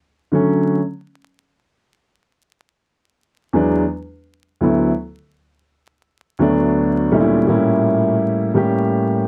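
A dark, up-front baby grand piano plays alone from 0.3 to 9.3 seconds in this mellow, nocturnal hip hop excerpt at 84 BPM with a 62% swing on the sixteenths, its smooth, long-sustaining vintage tone moving through Dmaj7, E9, D69 and A7b9 under light reverb in a dry, close 1970s-style studio sound dusted with vinyl crackle.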